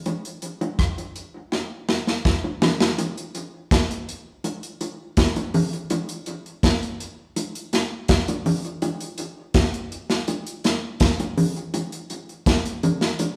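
Reggae drums and percussion carry this short, bittersweet fragment, a longing groove in straight 4/4 cut from a longer piece. A deep, dry acoustic drum kit sits up front, with a tight kick, a medium-tuned snare, rim clicks and hi-hat. Round, low-tuned bongos, played with soft hands and miked close, run alongside the kit throughout, colored by a tape echo. A drum fill arrives at 1.5 seconds and carries the opening section into the next part at 3.0 seconds, where the groove continues until the end. The band sounds as if it is playing live together in one small room, and a wet, stony reverb fills the space.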